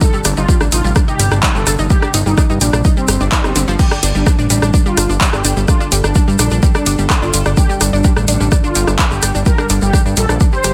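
This hypnotic, cinematic melodic techno passage opens on a dry, punchy electronic kick, overdriven and up front, under a tube shaker that sounds grainy and close. A smooth, expressive synth lead carries the melody with a soft attack, vibrato and an ensemble chorus trailed by digital delay. Beneath it, bright analog pluck arpeggios with a noise layer and short decay pump against the beat and ripple into dub echo, while an evolving wavetable pad morphs through very quiet sustained chords and a nasal analog drone drifts far in the background. At 0.2 seconds a fat, detuned sawtooth bass arrives, saturated and pumping with a filter sweep, alongside a layered deep house kit of metallic hats, handclaps, rim clicks and crash, also overdriven. A faint electronic swell appears at 3.2 seconds, and the kick drops out at 10.5 seconds in this short cut from a longer, dry-sounding piece.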